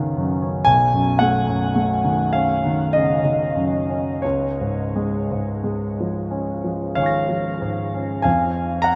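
A concert grand piano opens the excerpt alone on a Cbadd9 chord, its polished, present tone placed up front with a deep bass reaching down to Cb2. This is impressionist classical solo piano in 3/4, played with free rubato that gives the moment a luminous, dreamy mood. The harmony drifts from Cb9 to a Db6 at 4.2 seconds before settling on F minor at 8.3 seconds, and the upper register reaches as high as Bb6. A huge, wet reverb with a long decay surrounds the instrument, as if it were heard in a vast, echoing hall, and the tuning sits slightly low at A4 = 436 Hz. This short, warm fragment is cut from a longer piece and lasts about 9 seconds.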